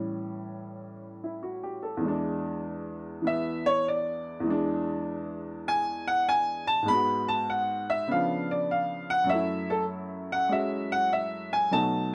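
A moderate studio reverb frames this relaxed solo jazz passage, cut from a longer piece, in which a woody, open, up-front upright piano carries everything alone for 12.1 seconds, swinging its eighths at 99 BPM in 4/4 across a range from E2 to B5, moving through E mixolydian harmony from A7 and E7 toward G#m7, C#7b9 and F#m7.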